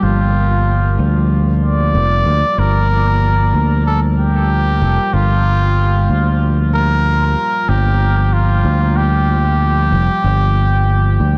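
Ambient dub at 94 BPM in G minor with a lightly swung sixteenth-note feel, this deep, meditative excerpt rests on a single Gm9 chord as a soft, veiled cup-muted trumpet carries the melody up front through dub echo, a moody, detuned sawtooth pad with chorus and its own reverb sustains chords in the background, and a round, punchy fingered electric bass sits direct and close beneath, inside a light reverb.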